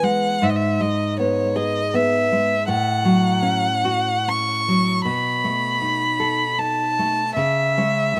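Serene and lyrical, this romantic duo for violin and classical guitar moves in an unhurried three-beat lilt with freely stretching rubato, a short passage drawn from a longer piece. A single bowed violin carries the melody up front, its tone rich, smooth and even, with vibrato and a close presence, while a fingerpicked nylon-string guitar provides bright, full-bodied accompaniment, finger squeaks audible and a slapback echo trailing its notes. The harmony passes through E/G#, F#m/A and B7 before settling on C#m, all under light reverb in an open outdoor recording.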